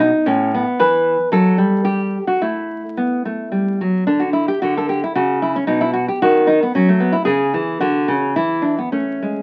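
Heard through the crackle of a very old 78 rpm record in a small, moderately reverberant room, this brief fragment of a longer piece is a radiant, dance-like baroque-style classical dance in 3/4 at a rubato 100-116 BPM, played solo by a full-bodied, fingerpicked nylon-string guitar sitting up front with audible finger squeak, moving from B7 to Em and on through Dmaj7 before it breaks off at 9.4 seconds.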